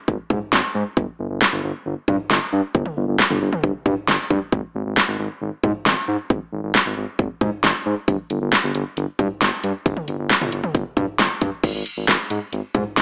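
Synth-pop in a cool, nocturnal mood at 135 BPM in straight 4/4, this excerpt pairs an up-front electronic pop drum kit, layered and punchy in the kick with a fat snare, hi-hat, crash cymbal and toms, with an up-front smooth, mellow synth bass blending sawtooth, square and triangle tones touched by ring modulation, both playing from 0.1 to 13.0 seconds in a moderate room reverb with an AM radio sound, before a new section arrives at 11.6 seconds.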